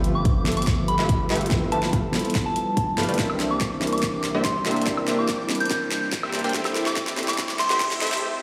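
A half-time groove in 4/4 carries this dreamy, lush future bass passage, cut from a longer piece, with a punchy layered electronic kick and a pop drum kit of fat snare, bright hi-hats and woodblock rolling through a drum fill across the whole build-up. Beneath them, a saturated sine sub bass sits deep and thick in the background, pumping with the sidechain, while a felt-muted upright piano adds a soft, intimate accompaniment coloured by tape echo. A detuned sawtooth supersaw stab plays the riff through a cassette-tape grit and a low-pass filter sweep, and a very quiet ethereal pad holds airy, slow-blooming chords under its own ensemble chorus. Entering at 0.2 seconds, a pure FM synth bell sings the high melody with chorus, phaser and echo. The harmony moves from G13 to C9 to Am7, a faint riser joins at 5.3 seconds, and the build breaks off at 8.2 seconds, all heard through a lush hall reverb as if played on a big sound system in a bare room.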